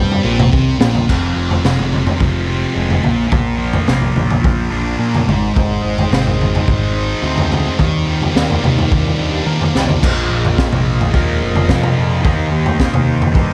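A thick, double-tracked fuzz guitar riff sits up front with distortion and phaser in this hypnotic, trippy psychedelic rock excerpt at 107 BPM, driven by a crunchy, saturated breakbeat drum kit with a punchy kick, high-tuned snare and dark cymbals, a growling overdriven picked electric bass, and a reedy tonewheel organ with key click and slow rotary speaker that holds sustained chords in the background, dropping out at 0.5 seconds and returning at 5.6 seconds, all in light studio reverb over chords moving from Fm through Bb, Ab and Ebmaj7 to Bb7sus4 and Eb6.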